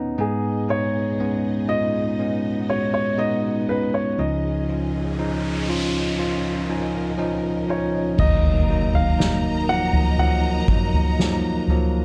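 A bright, bell-like tine electric piano opens this slow, longing pop ballad in Eb minor at 60 BPM. A polished grand piano soon carries the melody over distant bowed strings with vibrato and portamento, moving from Abm to Dbadd9. An electronic noise sweep enters at 5.1 seconds, and the electric piano plays a fill from 6.2 seconds. At 8.2 seconds an impact lands on Ebm as a lush symphonic violin section adds a second line and an up-front, roomy soft-mallet drum kit with punchy kick, snare, toms and crash comes in, all within a dark, warm production with light reverb.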